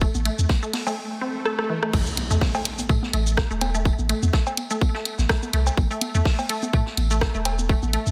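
A hypnotic, clinical minimal techno cut at 125 BPM in A minor, with a 16th-note swing. A tight, up-front electronic kick anchors the groove alongside a deep, punchy sine sub bass whose pitch-drop attack gives each note weight, while a squelchy, detuned blip pluck carries the riff with chorus and delay. A tape-warm garage kit adds crash, hi-hat, rim click and shaker, congas and cowbell bring analog color through delay, and a mid-forward vintage acoustic kit of hi-hat, snare and tambourine sits in the background with a rolled-off top. A swell builds from 1.1 seconds under a short drum fill, and at 1.9 seconds the track drops into its main section as an impact rings out until 3.9 seconds. Sidechain pumping on the pluck, the bass and the vintage kit's hats and percussion gives the mix its breathing pulse, all set in a light reverb.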